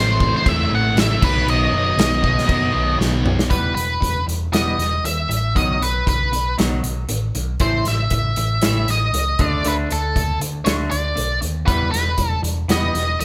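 A dark, up-front octave-fuzz lead guitar carries the melody through this brooding, angsty quiet-loud alternative rock excerpt at 118 BPM in E harmonic minor, over a growly, overdriven picked bass and a loose indie drum kit with a punchy kick in a small, pumping room. A sludgy distorted guitar and a thick fuzz guitar play riffs in the background until a drum fill brings the music to 3.5 seconds, where they stop, the drums drop into half time, and a bright, twangy clean electric guitar enters with spring-reverb arpeggios. The chords move through Am, B, Em, A5 and D5, and light reverb gives the feel of a band playing live in one room.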